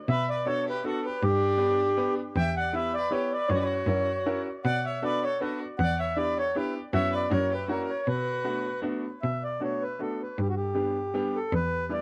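Bittersweet and whirling, this short excerpt from a longer musette waltz moves in a quick 3/4 at 158 BPM in B minor, tuned a touch high to A4 = 445 Hz. A mellow, reedy accordion carries the melody up front, its round single-reed tone close-miked yet touched by plate reverb and tape echo. Beneath it, a clear, focused cello plays the bass with vibrato, while a bright upright piano joins at 0.5 seconds with woody, short-sustained accompaniment and audible action noise. A rich, smooth violin adds a distant second line with even vibrato before dropping out at 8.8 seconds. The harmony circles through Bm7, G, Em and F#7 with suspended touches, and the opening phrase returns at 9.2 seconds, all set in a moderate booth ambience.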